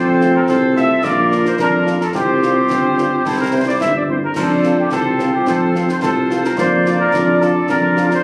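A mellow, vintage-toned trumpet section carries the melody up front in this proud, festive military-style march for wind band in 2/4, with clear woodwinds on a second line, bright, tight trombones holding sustained chords, a dark tuba on bass, very quiet French horns in accompaniment and close concert snare, bass drum and dark-sounding clash cymbals, all heard in a short cut from a longer piece captured on a phone in a large studio with a wet, club-like reverb.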